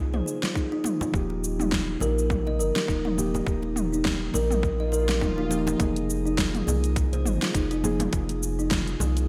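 Muted, felt-like synth keys with chorus, sidechain pumping and shimmer reverb open this earthy, mystical organic downtempo excerpt in F minor at 103 BPM, joined at once by a woody, ringing kalimba arpeggio and a round, deep analog bass up front, moving from Fm7 to Eb. An overdriven deep house kit with a fat snare, hi-hat, shaker and toms in gated reverb arrives at 0.1 seconds, followed by bright, dry congas in the background at 0.4 seconds and a tight electronic kick at 0.6 seconds, all riding a swung 16th-note feel. A faint electronic swell at 4.8 seconds leads into a second section returning to Fm7, under a bright 1980s-style digital sheen and moderate plate reverb.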